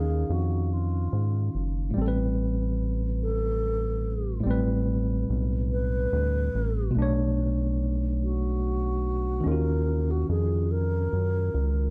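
Yearning and sultry, this slow R&B piece in six-eight moves at 48 BPM over lush minor-ninth chords, opening on D#m9 and shifting to Am9 at 2.0 seconds and Bm9 at 7.0 seconds. A worn, slightly out-of-tune tine electric piano sits up front with light overdrive, while a deep, dark analog bass with a fast, decaying attack anchors the low end. A pure, straight-toned alto flute carries the tongued melody from a distance through tape echo, all captured in a dry, close 1970s-style studio sound in this short passage cut from a longer piece.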